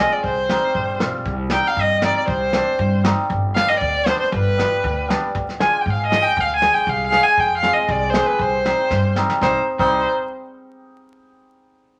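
Klezmer in 2/4 with a straight, festive yet bittersweet feel, cut from a longer piece. A rich, expressive violin carries the melody up front, one bowed player singing with vibrato and portamento, though it sits a touch distant in the space. Beneath it, a hammered dulcimer rings and shimmers through the accompaniment, while a woody, thumpy upright bass on gut strings is plucked pizzicato to anchor the low end. A soft drum kit played with brushes enters at 0.2 seconds, its dark, smooth sound with a punchy kick, medium-tuned snare, rolled-off top and crash cymbal suggesting a small room, and it plays a fill from 8.9 to 9.4 seconds just as the music turns toward a new section. The harmony moves through Cm, G, Ddim and Fm before returning to Cm, all set in moderate studio reverb with a layer of vinyl crackle.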